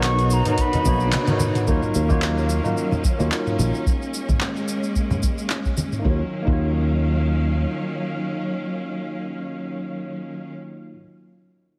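A short, wistful sunset chillout passage cut from a longer piece opens at once with a pure, hollow concert flute phrase carrying tape echo. Beneath it sit a barky tine electric piano played through a combo amp, a lush, distant bowed string section and a growly, up-front fretless bass with tube saturation and ensemble chorus. The groove moves at 110 BPM in 4/4 with a lazy swing on the 16ths in Eb minor. It is built from an overdriven smooth R&B kit of cabasa, handclaps, warm hi-hat and toms, a deep analog electronic kick and soft-handed congas set back in a small room. The flute drops out at 1.4 s as a drum fill and a band accent lead the harmony from Bmaj7 into Ebm9, then on to Bbm7. The kit falls away at 6.0 s, the kick at 6.6 s and the bass at 7.6 s. That leaves the strings, which fade at 10.5 s, and the echoing electric piano, which closes out at 11.0 s under a moderate hall reverb and a heavily compressed, radio-like sheen.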